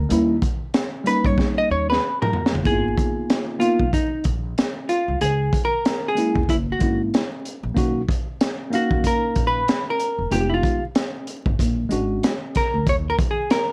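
Mellow and cool, this jazz-hop excerpt swings over a gritty, saturated breakbeat drum kit with a punchy kick, a high-tuned snare and a fill at 1.4 seconds, while a dark, clean hollow-body jazz guitar carries a picked solo melody up front, a woody pizzicato upright bass holds the low end, and a worn, slightly out-of-tune tine electric piano comps through rich jazz chords, beneath vinyl crackle and a moderate studio reverb.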